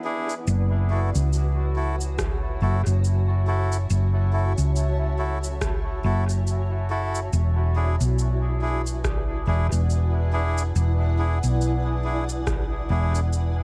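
A swung 16th-note feel in 4/4, set by overdriven cabasa and rim click with dub echo, carries this spacious, meditative ambient dub piece, where a round, up-front hollow-body fingered bass moves from F#m7 to E7, a deep, tape-warm analog kick enters at 2.2 seconds, reedy, breathy melodica stabs trail dub echo over a cloudy, detuned granular pad, and a faint, airy wind-like tuned noise texture sounds only in the first 0.5 seconds, within a dark production with little reverb.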